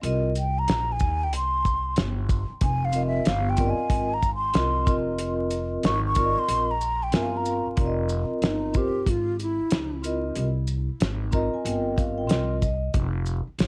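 Mellow and smoky, this jazz-hop excerpt sits at 93 BPM in F minor with a swung 16th-note feel, its harmony moving from Cm7 through Fm11 to Dbm and back to Fm. A hollow, airy concert flute with vibrato carries the melody, colored by cassette tape and analog delay, over ringing soft-mallet vibraphone, a woody, thumpy pizzicato upright bass on gut strings, and a cloth-damped kit with a fat snare and tight kick, the kick muted from 6.5 to 7.8 seconds. The vibraphone adds a fill at 11.0 seconds, and the dry home cassette recording carries a layer of vinyl crackle.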